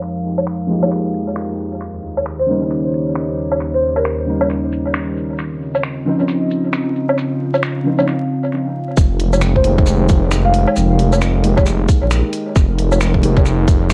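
A menacing, detuned saw bass arrives up front at 9.0 s with a saturated filter swell and sidechain pumping, joined there by a tight, gritty electronic kick, after a filter sweep and a brief break. Before that, this ghostly, melancholic future garage excerpt in F minor at 134 BPM, with a 61% swing on 16ths, rests on a warbling, nostalgic tape-like pad with chorus and lo-fi 12-bit grit, and a garage kit of finger snaps, hi-hat, shaker and woodblock heard through low-pass filters, tape echo and reverb. A felt-muted upright piano adds boxy, intimate accompaniment from 0.7 s, and a woody soft-mallet marimba plays short, round phrases from 2.4 s over Fm11, Eb7 and Dbmaj9 chords, all set in an echo-heavy mix with spring reverb and vinyl crackle.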